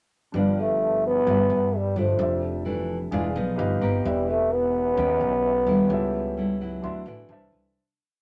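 A raspy, gritty trombone sits up front, carrying a soft-attack, motif-based jazz melody in period phrases over this sophisticated, romantic bossa nova at 129 BPM in 4/4. Beneath it, a fingerpicked nylon-string guitar plays thumb bass and syncopated plucked chords, a pizzicato upright bass with a woody, dark tone plays dotted root and fifth figures, and a baby grand piano holds open drop2 voicings with long sustain, adding fills at 3.4 and 6.8 seconds. Moderate studio ambience surrounds this short, complete piece, which begins fading out at 5.9 seconds as the harmony moves from G7 to a closing C69.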